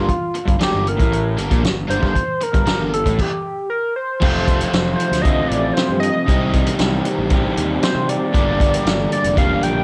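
A bold, chorused sawtooth lead stacked with a fifth layer carries the bittersweet, moody melody over a dark semi-hollow guitar riff, a bright overdriven garage guitar set in the background, a growly fuzz bass and an up-front vintage drum kit with a fat snare and punchy kick. A stop from 3.2 to 4.2 seconds comes before the move into a new section, all captured in a lightly reverberant, home-recorded cassette sound in this short indie rock excerpt.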